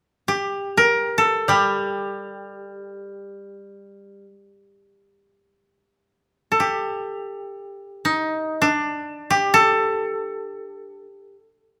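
A woody, fingerpicked koto carries the melody up front from 0.3 s to the end, its dry tone sitting between D4 and Bb4 in this still, meditative fragment of Japanese chamber music. A second, brighter koto adds a low G3 accompaniment from 1.5 to 4.2 s, quieter beneath the lead. Light reverb frames the traditional sound, tuned to A4 = 445 Hz.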